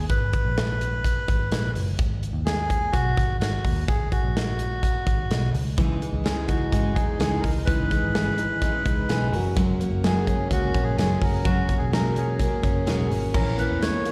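A straight 4/4 pulse at 127 BPM drives this short, bittersweet cut of jangly indie pop in G# minor, set up front by a big rock drum kit with a punchy kick, medium-tuned snare, bright crash and hi-hat ringing in a big room. From the first moment a reedy, breathy melodica carries the wistful melody, its nasal tone touched by slapback echo and plate reverb, while a vintage muted electric bass plays dark, round, foam-muted picked notes beneath. At 5.8 seconds two guitars join: a full-bodied dreadnought steel-string acoustic plays a picked accompaniment in the background, and a clean, compressed, direct-recorded electric guitar spins bright arpeggios through analog chorus, both with plate reverb and slapback echo. The harmony moves from G#m7 to C#madd9 and F#add9 before landing on an unsettled A#dim at 13.3 seconds. The whole performance sounds like a live gig heard through a venue's PA, with a light recital-hall reverb around it.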